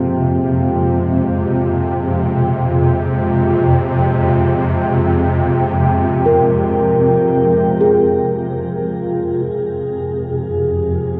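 Drenched in a huge, dark reverb with a 9.5-second tail, this short cut from a longer dark ambient drone piece drifts in free time in F minor, ominous and desolate. Up front, a swarming, tense drone of detuned, granular sine tones holds the low register and slowly evolves. A deep, moody pad of sawtooth and sine layers with a sub octave sustains an Fmadd9 chord, softened by chorus and shimmer reverb. A bronze singing bowl, played with a felt mallet, fades in over the first 8.4 seconds, its metallic ringing and slow beating carried by shimmer reverb and a diffuse ambient delay in meditative arpeggios. At 8.9 seconds, a round, horn-like synth lead with vibrato and chorus steps forward with a brief, mellow melody.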